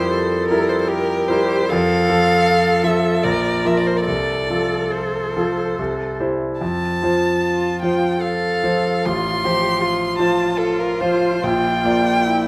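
A piano trio opens together in a tender, slow romantic movement in F major and 3/4, with rubato at 67-82 BPM: a single close, up-front violin sings the melody with vibrato, soft attacks and expressive portamento; one cello adds a rich, smooth second line; and a brilliant concert grand with deep bass and long sustain supplies the accompaniment, all bathed in the reverb of a recital hall across this 12.5-second passage cut from a longer piece.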